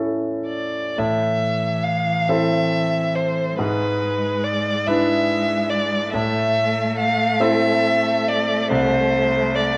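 Classical slow romantic movement for piano trio, lyrical and serene in a rubato 6/8 feel and cut from a longer piece, where a clear, open concert grand with deep bass lays down the accompaniment from the start, a focused, up-front violin enters at 0.5 seconds with a bowed melody rich in vibrato, and a smooth, even cello joins at 1.0 seconds as a second line, all heard in a wet recital hall through worn, warbling cassette tape with pitch drift.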